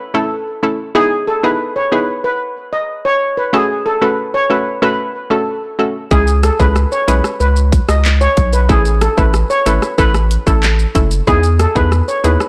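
A blown-out, overdriven and dry sound frames this hypnotic, bouncy dancehall excerpt at 93 BPM, where a mellow, shimmering steel pan carries the melody over a nasal, hollow square-wave pluck thickened with chorus, moving through chords from A and Emaj7 to F#m and C#m, until at 6.1 seconds a thick, saturated sub bass and an electronic island pop kit arrive together, the kit bringing a tight kick, dark hi-hats, handclaps, rim clicks, shaker and a softly clipped snare.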